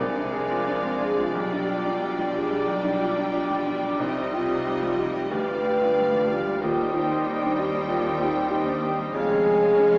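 Over an uneven, rubato 4/4 pulse at 92 BPM, this brooding, tragic excerpt of a romantic C minor movement sets a clear, intimate baby grand piano melody, with audible action noise, alongside a distant, vibrato-rich studio violin section, while a mellow flute ensemble, a lush symphonic violin section, a warm oboe and a very quiet clarinet weave second lines, a focused viola section and a dark bassoon accompany, mellow French horns and bright trombones hold sustained chords, cellos and double basses carry the bass, and dry, hard-mallet timpani sound until 4.9 seconds, all heard from further back in a reverberant recital hall through a small speaker.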